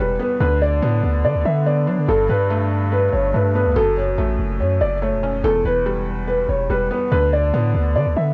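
A half-time drill groove at 143 BPM sets a menacing, ominous hip hop mood in this short cut from a longer piece, where a dark, boxy concert grand carries the melody with cassette tape colour, a soft, felt-muted upright piano with audible action noise plays intimate accompaniment, also through cassette tape, and a long, deep sine 808-style bass with a fast attack sits up front, all in light reverb over chords moving from D5 through Gadd9, F#m and Em back to D5.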